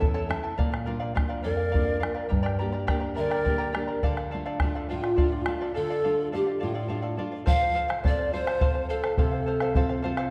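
A hollow, airy pan flute carries the wistful, melancholic melody with vibrato and tongued chiff, while a large wooden quena adds a crisp-attacked, straight-toned second line in the background. Underneath, a charango shimmers with fingerpicked double strings and a full-bodied nylon-string guitar fingerpicks a deep classical accompaniment in a straight 6/8, as a round, close and dry bombo sits up front. This Andean folk fragment, cut from a longer piece, moves through A, Bb, Gm and Dm before settling on F at 7.5 seconds, wrapped in a wet recital-hall reverb within a dark, warm production.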